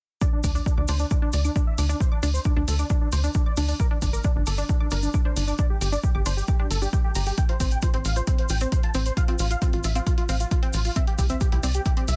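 A punchy electronic kick drives a straight 4/4 pulse at 134 BPM, joined by a grainy, bright tube shaker and, from 0.4 s, an electronic hi-hat, both drum parts sounding re-recorded in a small room. This is soaring, driving uplifting trance, a short cut from a longer piece. A tight sequencer bass sits up front in the low register with sidechain pumping, its sawtooth and square-wave tone shaped by a filter pluck into a mellow, decaying punch. Above it, a huge, thick supersaw carries the melody between D4 and A5, detuned and compressed with a sub octave, treated with sidechain pumping, a low-pass filter and tape echo. A lush, detuned unison pluck spins arpeggios up to D6 with the same pumping and echo, while the harmony moves from an open start through G5, F/A and C. The dense, heavily limited modern master places the whole arrangement in a digital ambience.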